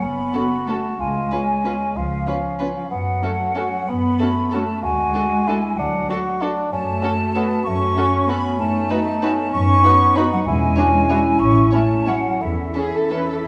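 A hollow, airy flute group, warm bassoon and muted cello and double bass sections open this sweeping, elegant classical excerpt in a rubato triple metre. Veiled, con sordino violins and violas join in the background at 0.3 s, a small chamber violin section carrying the melody, while a dark French horn section holds sustained chords beneath the flutes' crisp second line. Timpani with calf heads sound briefly at 10.5 s, after the harmony has turned from minor to major at 6.7 s, all set in a wet scoring-stage reverb.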